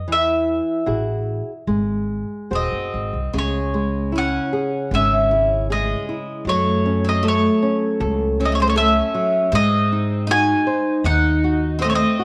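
The recording sits in a wet echo chamber with a studio reverb that lets each note hang for a moment, giving this nostalgic, tender fado-style ballad a close yet roomy glow. Cut from a longer piece, it moves at a rubato 70-81 BPM in 4/4, settling into C# harmonic minor at 3.3 s as the chords pass from Eadd9 and G#7 to C#m, F#m7 and back to G#7. Up front, a picked mandolin on double strings carries the melody with a woody, warm tone, while the upright bass, also up front, gives pizzicato gut-string notes that sound thumpy and dark through a touch of tube saturation. A fingerpicked flamenco guitar fills in shadowy accompaniment underneath from the start. At 2.5 s a picked twelve-string acoustic guitar joins with a shimmering, octave-doubled second line that adds a concert sheen to the texture.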